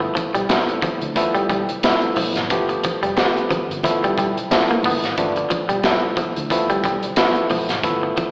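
An energetic, gritty funk excerpt at 90 BPM in G mixolydian opens on a twangy guitar riff at the edge of break-up, percussive clav stabs through a combo amp, both with slapback echo, and a dark, foam-muted vintage bass, all resting on a single G13 chord with a light sixteenth-note swing. A crunchy breakbeat kit arrives at 0.2 seconds with a tight kick, medium-tuned snare and hi-hat, saturated and up front with a rolled-off top, while very quiet, bright congas played with soft hands join at 0.5 seconds. The whole piece sounds like a live gig heard through a venue's PA, bathed in lush hall reverb and narrowed to an AM radio tone.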